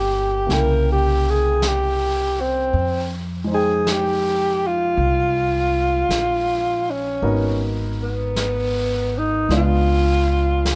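Jazz ballad in a slow, smoky, intimate swing, where a mellow, breathy alto saxophone leads with vibrato and scooped notes over a softly sustained upright piano and a woody pizzicato upright bass, while a vintage brush kit with a rolled-off top slips in at 0.5 seconds on brushed snare and hi-hat, all captured close and dry in this cut from a longer piece.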